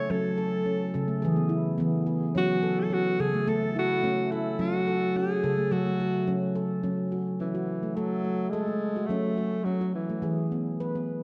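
World meditative music at 107 BPM in F# minor, this short excerpt cut from a longer piece has a hypnotic, meditative mood, with a ringing, bright stainless-steel handpan playing arpeggios up front from 0.0 to 11.2 seconds, struck with sharp finger strokes. A mellow, breathy alto saxophone carries the solo melody in a pop style, with subtone, scooped notes and a smooth top, until it stops at 10.5 seconds. The dark production sits in a wet concert hall reverb, with chords built around F#m, E and A shifting to F#5 and F#madd9 in the closing section from 6.8 seconds.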